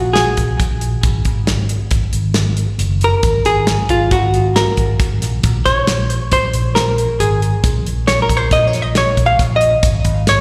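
Set in a straight 5/4 at 136 BPM, this brooding, driving slice of progressive band music in Bb minor, tuned to A4 = 439 Hz, is cut from a longer piece and runs about 10.4 seconds. A damped 70s drum kit enters at 0.2 seconds with hi-hat, tight kick and a medium-tuned snare, its acoustic, dry sound kept up front and touched with slapback echo. Beneath it, a fingered electric bass sits between Gb1 and Bb1 with a bright, growly, amped tone that also stands close in the mix. The hollow-body jazz guitar solos throughout, picking a clean, dark melody between F4 and F5 that is colored by slapback and tape echo. The harmony shifts from Absus2 to a rootless Gbadd9, settles on Bbm at 5.4 seconds and closes on Absus4. The whole performance carries the feel of a live gig heard through the venue's PA, wrapped in recital hall ambience and a moderate plate reverb.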